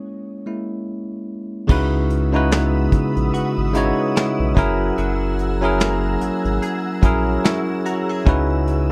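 A bell-like tine electric piano opens this late-night, longing contemporary R&B excerpt alone, sitting bright and up front over an A#m7b5/G# chord. At 1.7 seconds the drums, bass and guitar arrive at a relaxed 73 BPM in 4/4 with a lazy sixteenth-note swing in C# dorian, and the harmony settles onto C#m11 before moving to F#9 and back. A soft brush kit in a small room keeps dark cymbals, a medium-tuned snare and a punchy kick close to the listener. Beneath it, a round analog bass pairs a deep, sustained tone with a fast attack. A clean, direct-recorded electric guitar picks compressed arpeggios with ensemble chorus in the background, while a glassy FM pad enters at 2.2 seconds with ethereal, slow-blooming chords, its own chorus and reverb. Around 7.0 seconds the electric piano adds a short fill, all set in a dry, intimate mix.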